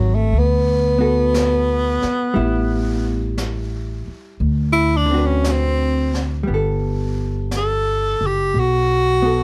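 A breathy, close-miked tenor saxophone with vibrato, a subtone and a soft attack sings up front over a dark, clean hollow-body electric guitar and a woody pizzicato upright bass, joined at 0.3 seconds by distant, roomy brushed drums with a high-tuned snare, in a tender, late-night jazz ballad at 58 BPM with a swung feel in G major, the saxophone solo running to 6.5 seconds, where the harmony returns to Gmaj9 in this passage cut from a longer piece.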